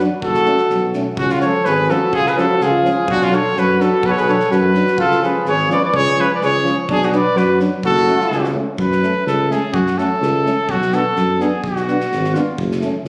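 A lightly swung 2/4 pulse at 126 BPM drives this fiery, bittersweet Balkan brass band excerpt in F# harmonic minor: a clear, up-front trumpet carries the melody and takes a solo from 8.8 seconds, while a mellow flugelhorn with tape echo plays a second line until 8.5 seconds. Beneath them, a dark tuba holds the bass, a roomy, distant euphonium and a close-miked trombone accompany in the background, and a loose acoustic drum kit with a punchy kick and medium-tuned snare sits low in the mix, all captured on a phone in a recital hall with moderate reverb and compression.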